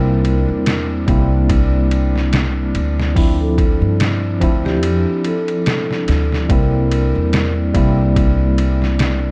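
Dark, lightly reverberant production frames this melancholic trip hop excerpt, built on a gritty, compressed sampler-style drum kit, pitched down with a thumpy kick and small-room ambience, which enters at 0.2 s over a woody, growly pizzicato upright bass already sounding from the start, both up front. A clean tine electric piano runs through a combo amp with tremolo, harmonic tremolo, 12-bit sampler grit and tape echo, moving from C7 to Dm9 and back. Behind them, a ringing, metallic vibraphone with its motor off drifts through dub echo until 7.5 s, over a tense, detuned, string-like drone held on a single note.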